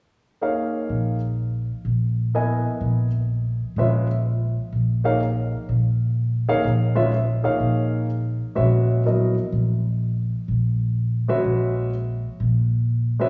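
Cool and hypnotic, this swung 125 BPM jazz fragment in Eb Phrygian pairs an intimate concert grand piano, natural in tone with deep bass and audible action noise, moving from Eb9sus4 to Gb9sus4 at 8.1 seconds, with a woody, growly pizzicato upright bass on steel strings sitting on a low Bb1, both placed up front within the wet reverb of a recital hall.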